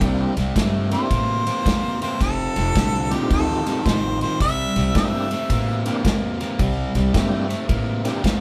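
A swung 109 BPM shuffle in 4/4 drives this soulful, swaggering electric blues excerpt in C mixolydian, with a punchy kick, medium-tuned snare and dark ride cymbal from a small-room acoustic kit up front, and a woody, thumpy pizzicato upright bass on gut strings moving through C7, F7 and back to C7. A bright, crunchy, picked electric guitar riff sits forward in the mix, while a full, lightly overdriven tonewheel organ comps through a slow rotary speaker with chorus vibrato. From 0.9 to 5.8 seconds, a roomy, jazz-style harmonica solo with light vibrato and tongue slaps carries the melody, all captured as a band playing live in one room with moderate reverb.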